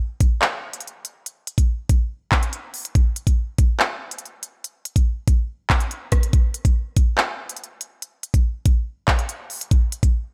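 Cold and tense, this excerpt of half-time hip hop drill at 142 BPM in 4/4 sets an up-front electronic drum kit of knocking kick, crisp hi-hat, handclaps and rim clicks from 0.2 to 10.1 seconds against a digital ambience.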